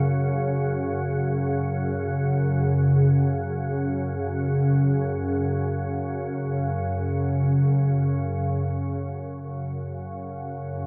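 Floating in free time with an unmeasured pulse, this short ambient excerpt from a longer piece is dark and unsettling despite its calm surface. A lone organ-like drone carries the entire 10.9 seconds, holding a single F#5 chord in a low register. Its detuned, sine-based tone has a slow attack, long sustain and a long release, with ensemble chorus, built-in reverb and delay thickening it into a shimmering unison. The drone sits up front, yet it is wrapped in a huge, wet ambient space whose reverb tail lasts 7.9 seconds. The tuning rests slightly below standard pitch, at A4 = 439 Hz, and the music shifts into a new section at 8.3 seconds.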